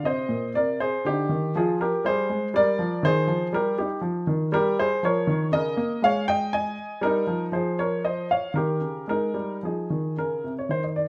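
A lilting triple metre, pushed and pulled by rubato, gives this baroque-style suite movement a dance-like, flowing character. A single baby grand piano carries everything alone from 0.0 to 11.1 seconds, its tone warm, present and up front, spanning Bb2 to Ab5. The harmony moves from Cm through Fm and Eb, gathers around an Eb7, and settles onto Ab at 9.1 seconds. A moderate stone-room reverb lends the instrument a gentle, resonant halo. Cut from a longer piece, the passage presents one graceful section of classical keyboard writing.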